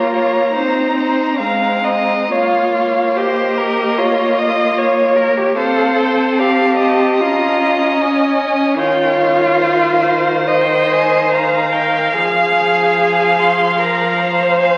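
Heard through the crackle of a very old 78 rpm record and the wet reverb of a concert hall, this excerpt from a slow romantic string quartet movement unfolds at about 73 BPM in 4/4 with tender, serene rubato. A dark first violin carries the melody with vibrato and expressive portamento, while an up-front, smooth second violin and an even viola fill the inner lines. A close, warm cello sings the bass with its own portamento, all four bowing throughout as the harmony drifts from Bbm through Eb13 to Fm.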